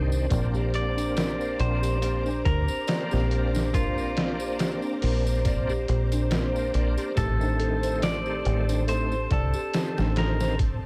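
A round, foam-muted dub bass with tube saturation sits up front in this hypnotic, smoky trip hop excerpt, under a gritty, pitched-down sampler drum kit with a thumpy kick and a compressed tambourine. A shouting tonewheel organ with key click, slow rotary speaker and 12-bit grit, a sweet bell-like celesta through tape echo, and sawtooth string-machine cellos in the background fill out a Bbadd9 that turns to Adim at 7.2 seconds. A twangy, picked clean electric guitar carries the melody through dub echo from 0.8 seconds, all in a dry sound.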